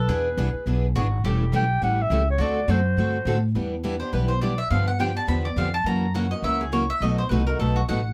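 A clarinet with a soft-attack subtone, light vibrato, scooped notes and a smooth top carries the jazz-style melody up front in this fiery, virtuosic slice of acoustic string swing (jazz manouche), taken at 208 BPM in 4/4 with a swung eighth-note feel. Its line ends at 3.4 s, and at 3.5 s the bright, double-strung bowl-back mandolin, which has played a picked second line from the start, moves into a solo as the music settles into E minor. Underneath, a thumpy gut-string upright bass is plucked up front with a woody tone. Two picked steel-string acoustic guitars share the accompaniment: one is a boxy parlour instrument with fresh strings and a warm body, and the other is a concert guitar with audible finger squeak. The harmony runs through E7, A7/E and D7 before turning to Em7, G7, F#7 and B7. Close, detailed microphones and little reverb give this cut from a longer piece an intimate, in-the-room presence.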